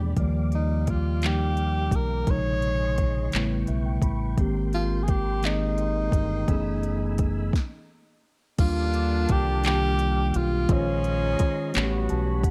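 A dark production with light reverb carries this intimate, slow six-eight R&B excerpt at 57 BPM, with an electronic drum kit of soft kick, sharp snare, crisp hi-hats, handclaps and crash sitting up front with some overdrive beside a round, deep fingered electric bass. A mellow, clean tine electric piano plays the accompaniment through chords such as Ebmaj9, Bbm11 and A9 and adds fills, while a tonewheel organ holds lightly overdriven sustained chords in the background, with key click, chorus vibrato and a slow rotary speaker. A breathy tenor saxophone leads in a jazz style with subtone, vibrato and scooped notes, a stop falls at 7.5 seconds, and a distant, punchy horn section enters at 8.6 seconds with tight stabs doubled in octaves.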